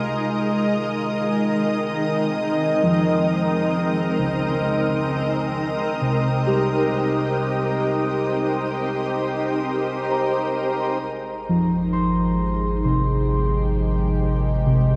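Serene and weightless, this ambient piece in Ab major drifts at 66 BPM in 3/4, opening with a shimmering, ethereal pad of sustained chords that carries an octave-up shimmer, alongside muted, felt-like synth keys playing intimate arpeggios through chorus and delay, while a rich chamber violin section with vibrato fades in until 11.0 seconds. At 1.7 seconds an overtone-sweeping drone with resonant, moving overtones settles in the background, and the harmony moves from Bbm11 to Cm7 before resolving onto Abmaj9 at 11.0 seconds, where a round, deep analog bass enters and the pad fades in. The dreamy mix is soaked in a lush hall reverb, giving this fragment of a longer work a floating, suspended glow.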